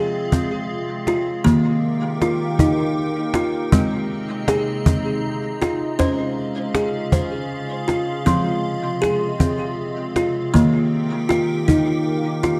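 A gentle 3/4 pulse at 79 BPM moves with a straight feel through this meditative world excerpt in F minor, with a snappy, close and dry cajon entering at 0.3 seconds to join kalimba arpeggios that sound woody and hollow-boxed, carrying a thumbnail pluck and a diffuse ambient delay up front. Behind them an icy, crystalline glass pad holds sustained chords with a slow attack, long release, chorus and its own built-in reverb, built from detuned unison sine tones, a noise layer and a moving notch. The dark production sits in an echo-chamber reverb as the harmony drifts from Fm through Eb, Ab and Db before returning to Fm and Eb.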